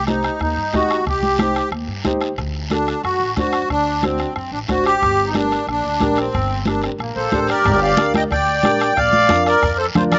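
A reedy, sweet accordion carries the melody up front in this driving, danceable cumbia excerpt, its light tremolo tuning giving the line a gentle shimmer as it ranges from Bb3 to G5. Underneath, a pizzicato upright bass with steel strings supplies a warm, woody low end, while a dark upright piano adds mellow accompaniment with long sustain in the middle register. The percussion is close: bright congas struck with hard hands and a raspy guiro, both dry, plus a softly beaten bombo, with the guiro sitting low in the blend. At a brisk 182 BPM in straight 4/4 and G harmonic minor, the harmony moves from Cm to D7 and Gm, a new section begins at 7.7 seconds, and the harmony then reaches Bb at 9.0 seconds. The sound is intimate and unadorned, recorded outdoors with little reverb and a softened top end.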